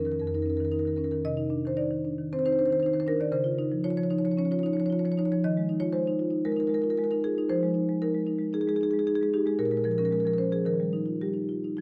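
Reflective and hypnotic, this contemporary classical passage for solo marimba moves at 115 BPM in 4/4 with a rubato feel, tuned slightly high, and it is cut from a longer piece. The marimba, struck with medium mallets, sits up front with a woody rosewood tone, ranging from F2 to Eb5 and drifting through lush extended harmonies such as Dbmaj9, Ebsus24 and Fm7 before settling on Ebadd9 near 10.7 seconds. Close, detailed microphones catch every bar, framed by the moderate reverb of a recital hall.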